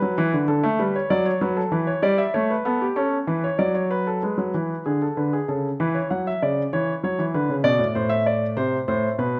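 Stately and elegant, this short classical piece, cut from a longer work, is a baroque-style two-part invention for solo concert grand piano at 96 BPM in a straight 3/4. The piano plays alone throughout, spanning A2 to F#5, and its tone is warm and open, with a deep bass, long sustain and an up-front presence. A moderate recital hall reverb gives the notes a natural sense of space. The harmony moves from D through Em7 and A to D/F# in the opening phrase. A new section begins at 4.2 seconds on E7 and passes through A/C#, F#5 and Bm before settling on Amadd11 at 8.0 seconds.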